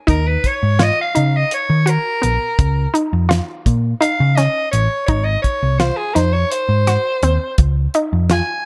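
Intricate and bright, this progressive instrumental clip moves in an uneven 7/8 at 168 BPM (eighths) with a straight feel in Db major, cut from a longer piece. A raspy soprano saxophone carries the solo melody from Ab4 to Ab5, its gritty, vibrato-laced tone sitting up front yet with a roomy, distant edge. Beneath it an analog pluck spins arpeggios between Cb4 and Gb4, a nasal, wave-folded sawtooth-and-square sound with a fast attack, short decay and a shimmer of chorus. A hollow-body short-scale picked electric bass anchors the low end from Ab1 to Eb3 with a dark, round, punchy presence, stopping at 8.4 seconds. A damped 70s drum kit of hi-hat, kick and snare sounds dry and acoustic, with a fat snare and tight kick placed up front. The harmony cycles through Ebm7, Db, Ab7 and back to Db, all set in light reverb and studio ambience.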